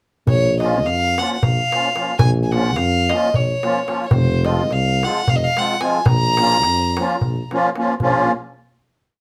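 Fiery and restless, this short Balkan wedding-band piece in 7/8 is led by a dark, floating violin played sul tasto, its soft-attack bowed melody built from motif-based sentence phrases, while a reedy, shimmering musette accordion supplies close-voiced off-beat chords. A mellow tuba anchors the bass with root and fifth on the main beats, and a clay-shell darbuka with natural skin plays a close, dry two-stick pattern. The band plays live in one room with a wet studio reverb, moving from Bbm to Fm and back before the violin drops out at 7.5 seconds and the others ring out on a final chord from 8.0 seconds.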